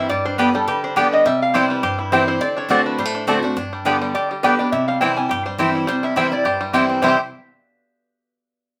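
A wet studio reverb gives this joyful, driving bluegrass excerpt a short, lively room, with a swung 208 BPM pulse in C major over chords moving from G to C to D7 and back. A twangy, percussive banjo and a nasal, metallic lap resonator guitar played with slide share the melody, while a bright, full-bodied dreadnought steel-string guitar picks the accompaniment up front. A round, double-strung mandolin adds stabs from 0.4 s, and a second, mellow resonator slide line joins at 5.9 s.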